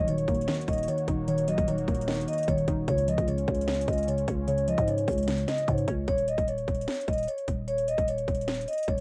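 Hard-hitting and menacing, this half-time trap cut from a longer hip hop piece sets a mellow, soft-mallet vibraphone melody with cassette-tape coloring up front over a warbling, detuned pluck and a resonant, chorused pad sitting in the background, both of which drop out around 6 seconds as the harmony shifts from Ebm7 and Db to Dbsus2/Eb. Underneath, a growling, buzzy 808-style bass runs throughout, while an overdriven electronic drum kit with a hard-clipped kick, sharp snare and metallic hats enters at 0.1 seconds. The whole thing has the dusty, lo-fi feel of a home cassette recording in a small booth.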